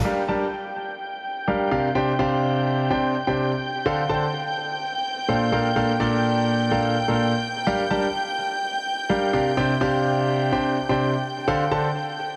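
Swung sixteenths at 126 BPM in 4/4 drive this energetic, bittersweet house fragment in G minor, where an up-front concert grand piano plays a riff with audible action noise, deep bass, vintage sampler grit, a low-pass filter and tape echo until 11.9 s, while a dark, intimate chamber string section holds soft-attack sul tasto chords with light vibrato through its own low-pass filter to 12.4 s, moving through Gm7, Csus2, Dm7 and Bbmaj7 inside a lush 2.1-second hall reverb with a heavily compressed, radio-like finish.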